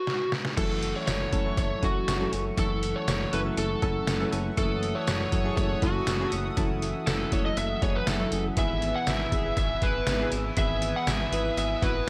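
A dark lead guitar through a small cranked amp carries the melody up front in this urgent, moody 1980s-style pop excerpt at 120 BPM in F# dorian, opening over a drum fill from a thumpy, muffled, pitched-down trip hop sampler-style kit with gated reverb, before a smooth sawtooth synth bass, glassy digital keys with chorus and phaser, a shimmering pulse-width pad, and a twangy, clean twelve-string electric guitar with tape echo join at 0.6 seconds on F#m7, and a very quiet, double-tracked overdriven electric guitar arrives at 8.6 seconds as the harmony moves to E/G#.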